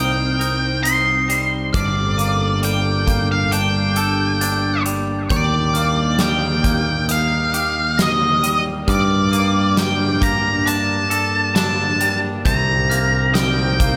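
A moderate large-studio reverb with a touch of small-room ambience surrounds this cinematic, brooding post-rock passage, cut from a longer piece. Up front, an octave-fuzz lead guitar carries the melody through distortion and analog delay, its tone warm and fuzzy, while a clean, twangy electric guitar picks arpeggios through its own analog delay. Sparkling glockenspiel arpeggios, struck with hard plastic mallets, ring in the background with delay, and an evolving wavetable pad sustains bright, morphing, detuned chords behind them, treated with chorus and its built-in reverb. A growling fingered bass, overdriven and direct, anchors the low end. A huge arena drum kit enters at 0.4 s with a punchy kick, fat snare and hi-hat, while the harmony moves from Cm7 through Gmadd9 and Ebmaj7 before returning to Cm7 at 12.5 s.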